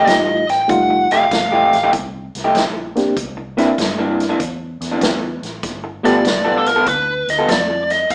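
A bright, overdriven lead guitar leads this swaggering, soulful electric blues shuffle, playing a short phrase at the start and returning at 6.1 seconds, as the chords move from F9 through C9 to G9. Beneath it, a slightly broken-up, lo-fi guitar through a small old amp plays the riff, while a reedy, barky electric piano with light overdrive and fast tremolo sits up front until 6.2 seconds. A dark, round, foam-muted fingered bass sits low in the mix, and a swinging big-band kit of hi-hat, snare and boomy kick sounds natural in a big room, all caught as a band playing live together with moderate reverb and a small-speaker sound.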